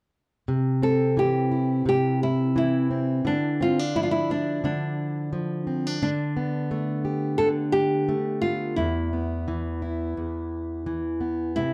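A fingerpicked, plugged-in jumbo steel-string acoustic guitar opens this sunny, easy-going pop excerpt at 0.5 s with a full-bodied accompaniment in C major at 87 BPM with a light 16th-note swing, joined at 0.8 s by an up-front classical nylon-string guitar carrying the fingerpicked melody through chords of C, Dmadd9, Gadd9/D and E5, all set in a dark, warm production with a short, wet studio reverb.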